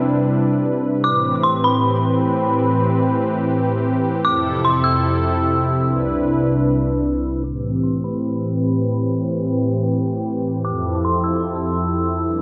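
Hip hop in free time and A minor, this spacious, hazy fragment of a longer piece sets a smooth, slow-attack analog pad of sustained chords from Cmaj9 through Am9 and Fmaj7 under an eerie, inharmonic FM synth bell melody that enters at 1.0 seconds, its chorus and dub echo ringing through spring reverb before a filter sweep runs through the second section from 7.4 seconds.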